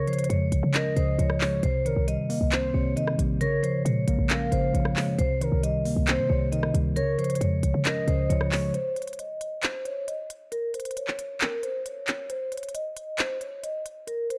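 A ringing, metallic vibraphone carries the melody from the opening moment, struck with medium hard mallets and shaded by a slow motor vibrato and a low-pass filter. Alongside it, a smooth sine lead glides with portamento as a second line, softened by chorus and delay, while a worn, slightly out-of-tune tine electric piano played through a combo amp comps on Dbmaj7, Cm7 and Bbm7 chords. A short, punchy 808-style bass with a fast attack and decaying tail anchors the low end, and a crisp, up-front trap kit of handclaps, hi-hats and rim clicks enters at 0.1 seconds. This is menacing, dark trap in half-time at 135 BPM, with light digital ambience and a dark, warm production. At 8.7 seconds the lead, electric piano and bass drop away for a break, leaving the vibraphone under a filter sweep over the drums, and the kick cuts out at 14.1 seconds before this fragment of a longer piece ends.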